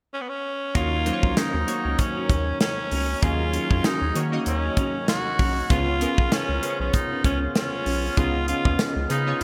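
1980s-style pop in Eb minor at 97 BPM with a light sixteenth-note swing, this moody, urgent excerpt opens with a raspy, gritty tenor saxophone carrying the melody up front at 0.1 s. From about 0.7 s it is joined by glossy chorused retro synth keys and a clean semi-hollow electric guitar riff with ensemble chorus, while a tight woodwind section holds sustained chords with light vibrato in the background. At 0.8 s a punchy acoustic drum kit and a rubbery square-wave bass come in. The harmony moves from Ebm7 to Db7 at 5.7 s, all set in a bright digital production with lush hall reverb.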